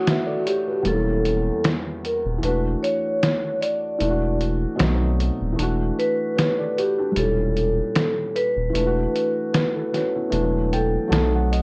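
A ringing, metallic vibraphone played with medium mallets carries the melody through a slow motor vibrato, set over a soft, felt-muted upright piano that sounds mellow and intimate under a low-pass filter and cassette tape. This melancholic, nostalgic lo-fi hip hop passage moves at 76 BPM with a gentle swing, as a compressed, pitched-down sampler-style drum kit with a muffled hi-hat and a medium-tuned snare enters at 0.1 seconds, and a deep, thick, saturated sine sub bass joins at 0.9 seconds. Moderate studio reverb and worn, warbling old tape with wavering pitch drift give the whole cut a dusty, faded character as it cycles through its Esus2 and A7b9/E changes.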